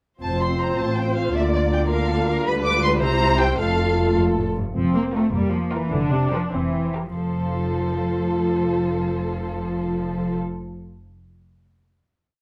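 Muted string sections enter together at 0.2 s in a graceful, lively classical-period movement in 6/8 for string orchestra, with two veiled violin sections carrying the melody and a counter-melody over lush, tremolo-tinged violas, a dark bowed cello section and an up-front double bass section doubling the bass line, all captured in a lightly reverberant, closely miked sound that slows from 4.2 s into a brief coda before resting on a final chord at 7.1 s.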